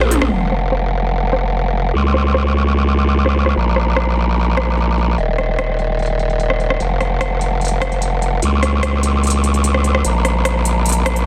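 Heavy wobble dubstep at 148 BPM in a half-time feel, this aggressive, menacing excerpt opens with a brief drum fill before a filter sweep runs across the big-room electronic kit from 0.3 seconds, its crash, crisp low-passed hats, rim click and toms overdriven and re-recorded in a large room, while an up-front growling bass wobbles through a formant filter, saturated and compressed with chorus and overdrive, all set in light reverb within a dense, heavily limited modern master.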